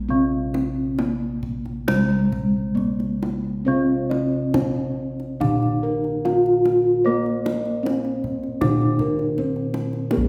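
Serene and shimmering, this excerpt of Javanese gamelan in Bb slendro moves at 67-82 BPM in a straight 4/4, with a bronze metallophone carrying the melody over a second metallophone's accompaniment: the lead is mellow and soft under padded disc mallets, its paired tuning producing shimmering beats, while the accompanying one rings bright and mid-forward under a horn mallet. Round, beating bossed gongs hold the bass, a tight kendang joins at 0.5 s, and more gongs struck with gentle padded beaters add arpeggios from 3.7 s, all set in the reverberant bloom of a recital hall.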